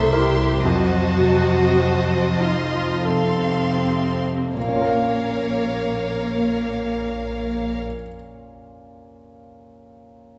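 In a slow, rubato 3/4 that slows over its first 4.5 seconds and moves between 38 and 59 BPM, this tragic, brooding fragment of a Romantic movement for piano and orchestra in Bb minor passes from C7 and F7b9 harmony to a Bbm arrival at 4.5 seconds. An intimate, up-front concert grand carries the melody with deep bass, long sustain and audible action noise. Around it, a distant, expressive violin section sings high above a smooth second violin line, lush violas, very quiet cellos and focused double basses, all bowed with vibrato until the strings stop at 7.8 seconds, leaving the piano alone until 10.4 seconds in a reverberant recital hall with a dark, rolled-off top.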